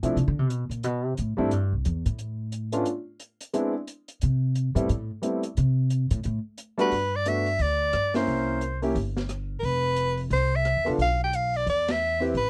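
A dry, close studio sound in a 1970s vein frames this swinging small-group jazz passage, cut from a longer piece. The woody, thumpy gut-string upright bass takes a pizzicato solo up front for the first 6.9 seconds, alongside a natural-sounding baby grand piano accompaniment with long sustain and a smooth drum kit of hi-hat, dark ride cymbal, rim click and high-tuned snare. At 6.8 seconds a bright, close-miked soprano saxophone enters with vibrato on the melody, and the band hits an accent at 11.8 seconds.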